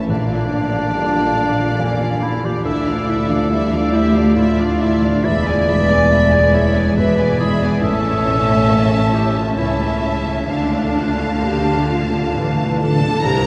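In a rubato 3/4, this sorrowful, moving orchestral film cue sets bowed violins on a lush, vibrato-laden melody above a second violin line, while a clear solo clarinet in classical style joins with its own line at 0.1 seconds. Beneath them sit a soft, felt-muted upright piano with audible action noise, an expressive viola section, a focused cello section and a rich double bass section, all heard from further back in a long cathedral reverb. Round, soft-mallet timpani with calf heads enter at 10.5 seconds for a brief fill as the harmony arrives on a minor chord in this passage cut from a longer piece.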